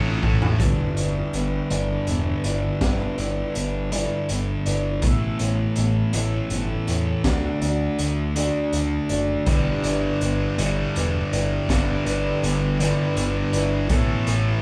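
Bittersweet and anthemic, this slow 6/8 quiet-loud alternative rock excerpt at 54 BPM opens with a drum fill from 0.2 seconds before settling into a half-time feel, as a dark, thick fuzz guitar riff sits up front over overdriven electric bass, a gritty, punchy garage drum kit with a high-tuned snare, bright picked arpeggios on an acoustic archtop guitar from 0.6 seconds, and a high-gain distorted guitar that returns at 9.5 seconds, all played live together in one room under a wet, large studio reverb as the chords move from G6 through Aadd9 and D.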